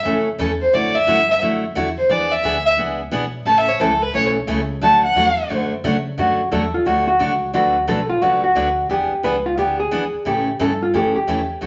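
A dark, woody fiddle with light vibrato and portamento carries the melody up front over bright, full-bodied picked acoustic guitar and thumpy pizzicato upright bass in this cheerful, down-home western swing at 176 BPM in D major, until the fiddle bows out at 5.5 seconds and a clean, hollow-body electric jazz guitar takes the solo from 6.2 seconds, the whole band sitting in a wet studio reverb with a mellow, rolled-off top end.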